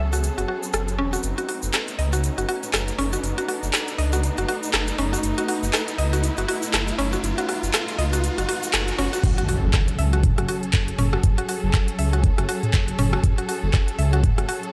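Spiritual, earthy afro house at 120 BPM in F# dorian with a swung 16th feel, where dark, lush bowed strings and a woody, mallet-like FM pluck spinning chorused, tape-echoed arpeggios ride a rumbling detuned saw bass, all three pumping with sidechain, while an afro-pop kit of smooth hats, handclaps, rim clicks, toms and crash, plus a grainy egg shaker in the background, drives a riser-led build-up over F#m and B7/F# until the knocking electronic kick and impact land the drop at 9.2 seconds in this light-reverb studio cut from a longer piece.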